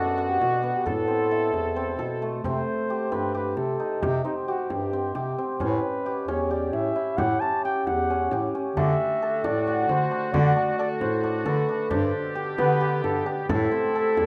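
A shimmering, ringing cimbalom sits up front with hammered arpeggios throughout this pensive, hypnotic excerpt of contemporary chamber music, which moves in 7/8 at 266 BPM counted in eighths with a straight feel in A dorian. Over it, a dark, breathy flugelhorn carries the melody in a whispered, intimate jazz style with vibrato and a soft attack. A mellow bass clarinet, also up front, holds down the bass line with a smooth, classical touch. A close, dry frame drum played with soft hands enters at 0.4 seconds, while a warm, tight woodwind section lays down sustained chords with light vibrato, drops out at 2.4 seconds and returns at 8.8 seconds. The harmony drifts from Bm and Amadd9 through Cm, A7, D and G before settling on Am. Close, detailed microphones capture the ensemble in a moderate recital hall reverb.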